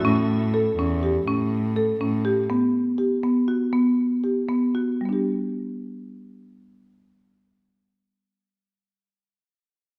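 Set in a straight 5/8, this playful, shimmering chamber piece features a marimba played with medium mallets, its woody, dark arpeggios sitting up front throughout. A close, intimate cello plays the bass line with light vibrato and an airy sul tasto bow until 2.5 seconds, when the harmony moves from A to Gmaj7 and the pulse slows down, settling on G at 5.0 seconds. The whole passage, cut from a longer work, rings in a wet recital hall.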